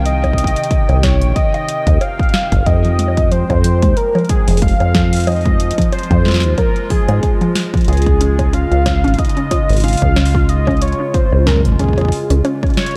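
IDM excerpt, glitchy and wistful, with a rubbery, resonant acid bass up front, a velvety synth lead and a warbling, nostalgic pad with sidechain pumping over booming analog drum machine bongos, crisp snare and metallic hats plus a heavy electronic kick, while a dusty, detuned pluck arpeggio joins in the background at 2.8 seconds, moving through Cm, Fmadd9 and Db in a dark, lightly reverberant mix before a drum fill at 12.8 seconds.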